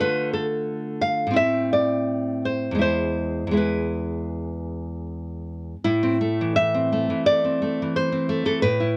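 Melancholic and passionate, this romantic piece for solo classical guitar unfolds in A minor with a rubato feel, its tempo drifting between 78 and 90 BPM in 4/4. A lone nylon-string guitar carries everything, fingerpicked and placed up front, with a dark, full-bodied tone that reaches from E2 up to F5. The harmony moves from Dm to Am and then to E, settling back on Am at 5.8 seconds as the opening section gives way to a new one. Light reverb surrounds the instrument, while the sound of worn, warbling old cassette tape adds a wavering pitch drift. The nine-second passage is cut from a longer piece, tuned slightly high to A4 = 442 Hz.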